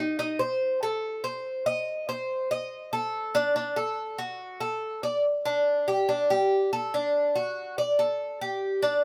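Nostalgic and sultry, this brief latin fragment cut from a longer piece features a solo acoustic Cuban tres, picked up front on metallic double strings with some octave-doubled courses, moving between D4 and Eb5 at 142 BPM in a straight 4/4, captured by close, detailed microphones with light reverb and tuned to A4 = 439 Hz, as its opening idea gives way to a new section at 5.2 seconds.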